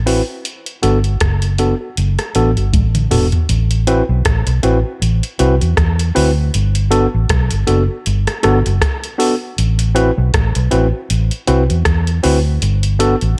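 A round, dark, foam-muted fingered bass sits up front in this bittersweet, longing lovers rock reggae excerpt, with a swung sixteenth-note feel. A worn, slightly out-of-tune tine electric piano in mellow tones alternates between Gmaj7 and Am69 chords, over a soft analog rhythm box of deep kick, metallic hi-hats, rim clicks and toms, re-recorded in a large room. A drum fill from 2.7 to 3.5 seconds leads into the next part of the groove, and digital ambience surrounds the mix.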